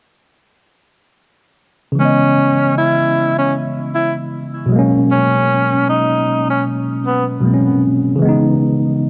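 The tine electric piano comes in first at 1.9 seconds, a worn, slightly out-of-tune voice that sounds lightly overdriven through built-in speakers and sits up front with a low-pass filter dulling its top. A moment later, at 2.0 seconds, a bright tenor saxophone takes the solo melody in a jazz style, its soft attack and vibrato colored by a low-pass filter and an analog delay, carrying on until 7.2 seconds. This is a nostalgic, reflective hip hop fragment cut from a longer piece, moving at 77 BPM in 4/4 with a light 16th-note swing in C# dorian. The harmony drifts from C#m9 to G#m11 and back to C#m9, with the electric piano holding the accompaniment until 9.1 seconds. A plate reverb with a long tail and an echo-heavy, cassette-tape sound wrap the whole fragment in a hazy, faded glow.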